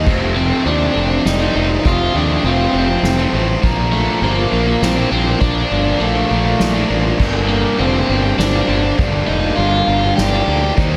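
A straight 3/4 pulse at 101 BPM drives this brooding, melancholic post-rock passage in G minor, cut from a longer piece. A soft-mallet drum kit sits in the background, with a boomy kick, a medium-tuned snare and dark crash and ride cymbals in a natural hall sound. A fuzz-laden fingered electric bass sits up front, direct and amped with a bright, overdriven edge. Two bright, picked electric guitars play the riff, one overdriven and the other distorted and further back. An airy vibraphone on medium hard mallets rings out metallic arpeggios high above through analog delay, with its motor off. From 0.4 seconds a compressed, warm, overdriven lead guitar carries the melody with its own analog delay, over a progression moving from F5 through Bbmaj7 to Gm7, all in light studio reverb.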